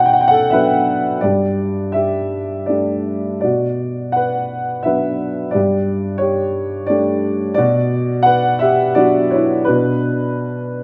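Cool and moody, this brief classical passage, cut from a longer piece, features a dark, mellow grand piano playing alone in B minor at 79-90 BPM in a rubato 3/4, its boxy, up-front tone set in a moderate recital hall reverb as the harmony moves between Bm and Gsus2 from 0.0 to 10.8 seconds.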